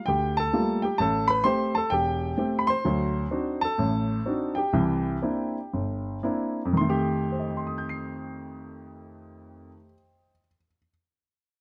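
A warm baby grand piano carries this short solo jazz fragment alone, its tone natural and up front, ranging from E1 up to C7. The mood is playful and swinging, with a swung eighth-note feel in 4/4. The harmony moves through rich jazz chords, opening on Gm9 and Am7, then passing through D7b9 and C9 before settling on F9 at 6.8 seconds. Between 2.8 and 6.8 seconds the pace slows, giving the phrase a relaxed, stretched-out lean before the closing passage. Close, detailed microphones and a light reverb keep the instrument intimate and clear. The piece is cut from a longer performance and stops at 10.9 seconds.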